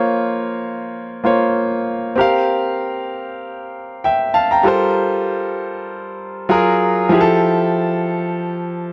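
Soul with a romantic, lush mood at 97 BPM, this short cut from a longer piece features a solo bright grand piano, brilliant, natural and up front in light reverb, moving with a gentle 16th-note swing from Bbmadd9 and C7sus4 into Gm11, Gbmaj9 and Fmaj9 over its 8.9 seconds, tuned slightly low to A4 = 438 Hz.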